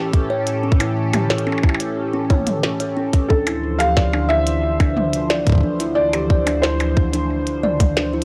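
Eerie and melancholic, this IDM excerpt in D minor moves at 90 BPM in a straight 4/4, shifting from A7 to Dm7 at 3.3 seconds, as a felt-muted upright piano plays an intimate, mellow melody through tape echo over a swirling, detuned sawtooth pad thick with phaser, chorus and vintage 12-bit sampler grit, while a tight, up-front electronic kick and a glitchy kit of tiny snare, clicky hats, shaker, toms and percussion blips sit in studio reverb, a woody, hollow kalimba enters at 0.3 seconds with ringing arpeggios in tape echo, and the dry, gritty cassette recording carries transformer saturation throughout.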